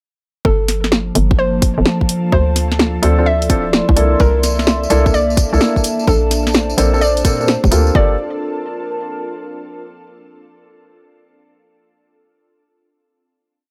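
A small, moderately reverberant room frames this short, skippy and moody two-step UK garage piece at 128 BPM in G dorian, its swung sixteenths driven by a tight, tape-warm two-step kick and an overdriven analog drum machine snapping out punchy snares and skipping hats, joined from 4.2 seconds by a jingly, band-limited tambourine in hand-played sixteenths. A hollow, knocking FM bass bounces through a syncopated line under a detuned square-wave pluck repeating a mellow riff through chorus and tape echo, while from 3.0 seconds a close-voiced baby grand piano adds present, syncopated chord stabs with digital delay over a Gm9, Dm7, C13 and Bbmaj9 progression. Behind them, an ethereal, phased pad glows with ensemble chorus and sidechain pumping, and a warbling, nostalgic lo-fi pad shifts slowly through its chords, lingering on the final Gm9 from 8.0 seconds until 9.8 seconds.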